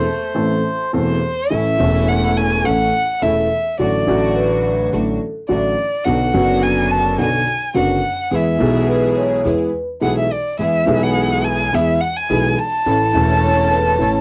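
Tango with a passionate, sultry mood and a loose rubato feel, heard as a short section from a longer piece. A reedy, dark bandoneon states the melody up front only briefly at the very start, before the bowed violin takes a solo from 1.5 s, played by one player with expressive vibrato, portamento and a smooth top. Beneath it, a natural-sounding grand piano carries the accompaniment up front, while a woody, thumpy upright bass plays pizzicato on steel strings. A distant, earthy studio string section adds light-vibrato stabs in the background, and a mellow vibraphone struck with soft mallets, motor off, rings in a metallic second line at 4.4 s and again from 8.9 s. The harmony opens on A minor and brightens to A major, and the piece is a home cassette recording made in a booth with moderate ambience.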